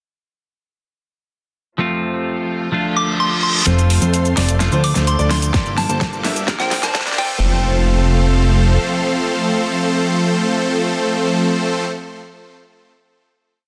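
A straight 4/4 pulse at 128 BPM drives this euphoric, anthemic festival progressive house piece in F major, where a clean, twangy electric guitar and a bowed string pad open at 1.8 s under a filter sweep, very quiet reverse cymbal, riser and impact effects mark the transitions, and a soft FM synth bell adds short answering phrases, until at 3.7 s huge detuned supersaw chords with a filter sweep, a fat saturated analog bass, a brilliant grand piano doubling the chords and an overdriven big-room kit with metallic hats and a huge snare surge through a build and drum fill, a punchy four-on-the-floor kick joins at 5.5 s, and the final hit lands at 7.4 s in a dense, heavily limited mix.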